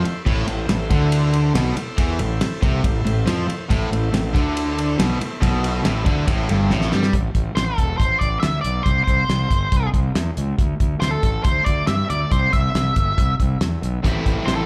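A straight 4/4 groove at 139 BPM drives this swaggering, driving classic rock excerpt in A minor, heard as a live gig through the venue's PA with club reverb. The damped 70s drum kit sits up front with a fat snare, tight kick and dark cymbals. A punchy, overdriven fingered bass with fuzz is also up front. Over the opening, a bright, picked distorted electric guitar and an overdriven semi-hollow guitar, the latter hollow-bodied and set in the background, play a riff with slapback echo. Beneath them, a very quiet tonewheel organ holds full, shouting, lightly overdriven chords through a slow rotary speaker. A drum fill at 6.7 seconds leads into the second part, where an octave-fuzz lead guitar takes the melody from 7.6 seconds, dark and distorted with slapback and tape echo, as the harmony moves from A5 through an unharmonized stretch to D5 and C. The riff guitars return briefly at 14.0 seconds as the chords come back to Am.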